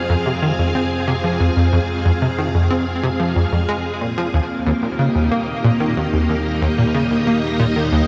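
A punchy, funky analog bass with a sawtooth filter pluck sits up front, playing a riff through lush chorus and delay over a vintage string machine whose full-bodied ensemble chords shimmer in reverb. Beneath them an evolving, detuned analog drone holds low in the background, while the harmony moves from F minor to E-flat at 4.3 seconds. This excerpt of cosmic, mysterious sequencer-driven space music is dreamy and soaked in hall reverb, with a cassette tape character.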